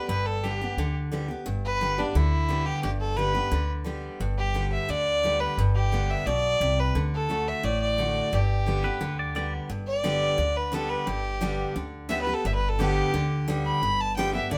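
Over a straight four-beat feel, this easygoing, heartfelt honky-tonk and classic country clip puts a clear, earthy bowed fiddle with light vibrato up front over bright, full-bodied picked acoustic guitar and woody pizzicato upright bass, while a twangy, compressed electric guitar adds a brief second line at 8.8 seconds before the fiddle takes a solo from 9.7 seconds, all in light reverb.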